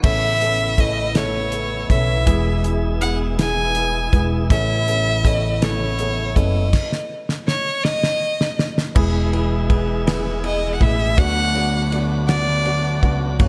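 In a straight 6/8 at 54 BPM, this heartfelt, tender pop ballad in E major carries a rich, bowed violin melody with vibrato up front, over a dark, slightly detuned upright piano and a lightly overdriven tonewheel organ with key click, both treated with lush chorus; a fingerpicked dreadnought guitar adds chorused arpeggios in the background until 6.9 s, a woody pizzicato upright bass sits beneath, and a dry, damped 70s drum kit with a fat snare and gated reverb plays a fill across a stop from 6.7 to 9.0 s before the harmony moves from E to D6 in a bright 1980s-style digital mix.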